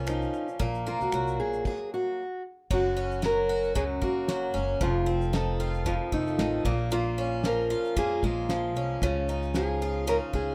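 A bright, boxy twelve-string acoustic guitar sits up front, its picked, octave-doubled chords shimmering with a light swing across this easy-going, carefree acoustic pop excerpt. Above it, a fingerpicked steel-string acoustic guitar carries the melody with a fresh-stringed, auditorium-like tone, finger squeaks audible as it plays. A woody, dark pizzicato upright bass also sits forward in the mix, while a cloth-damped drum kit adds a dry, thuddy pulse with a fat snare, tight kick, shaker, finger snaps and dusky crash cymbals under a rolled-off top. The band halts for a brief stop from 1.7 to 2.7 seconds, after which a new section opens and the harmony moves from Gb through F7 and Bbm7 to Dbadd9. Light reverb gives the whole a gentle, relaxed sense of space.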